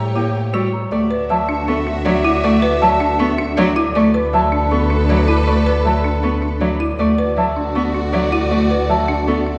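A straight 4/4 pulse drives this propulsive, hypnotic stretch of minimalist classical pattern music, cut from a longer piece, where a dry, woody folk marimba with hard mallets and a mellow, hollow silver concert flute spin arpeggios over a bowed, up-front double bass and a single expressive cello with portamento, while a thumb-plucked, ringing Celtic harp carries the melody against sustained chords from a focused chamber string section, the whole ensemble heard from further back in a wet scoring-stage reverb as an opening A7b9 gives way to Dmaj9 at 0.9 s.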